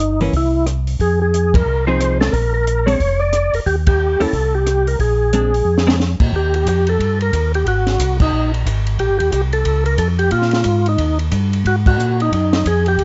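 A bluesy, soulful soul jazz organ trio groove in swung 4/4, cut from a longer piece. A percussive tonewheel organ carries the melody with a full, lightly overdriven tone, its second harmonic percussion, chorus vibrato and slow rotary speaker sitting up front. A second tonewheel organ, mellow and round with a clean, dark voice and the same slow rotary and chorus vibrato, holds down the bass line. A compact cocktail drum kit keeps things dry and acoustic with dark cymbals, a high-tuned snare and a punchy kick, marking band accents at 1.5 and 3.8 seconds and closing the first phrase with a short fill just before 6.0 seconds. A clean, compressed hollow-body electric guitar adds picked accompaniment until 6.0 seconds, after which the organs and drums carry the second phrase alone in a light reverb with a soft, rolled-off top end.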